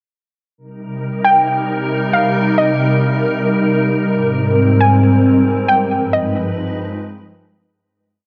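A glassy, ethereal FM pad sits up front in this hazy, spacious hip hop piece, entering at 0.6 s with slow-attack chords that hang on a long release, thickened by ensemble chorus and its own built-in reverb. At 1.2 s a warbling, lo-fi pluck joins, a detuned blend of triangle and sawtooth tones with a dusty noise layer and a filter sweep, each note striking with a fast attack and then decaying. This pluck traces a sparse, mellow melody high above the pad, repeated like a sampled loop and softened by chorus and delay. The half-time feel lets the harmony move unhurriedly from Cm7 to Abmaj9 and then to a tense G7b9b13. A huge ambient reverb bathes the whole mix in a long, misty tail, and the music fades out from 5.9 s to its close.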